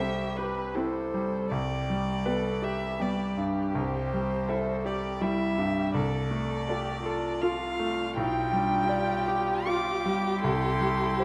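Classical slow romantic movement for piano quintet in a gently rubato triple metre, serene and tender, cut from a longer piece. A close, veiled muted violin sings the melody up front with vibrato. Behind it, a second muted violin adds a smooth line with portamento and a soft-attacked muted viola fills in, while a muted cello carries a further line with light vibrato. A brilliant concert grand with deep bass sits present in the accompaniment, the whole blended in a dark production with moderate stage reverb.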